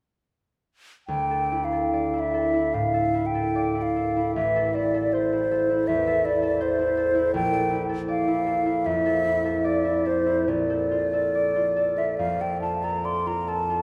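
Classical impressionist duo in D minor, hazy and wistful, where a mellow, hollow silver concert flute sings an up-front, close-miked melody with vibrato and tongued notes over a fingerpicked, ringing concert harp accompaniment, both entering at 1.1 seconds and moving in a rubato 4/4 around 69-83 BPM through Dsus2, Am, Bbmaj7#11 and Bbmaj7 chords, all bathed in a long, wet cathedral reverb in a brief excerpt cut from a longer piece.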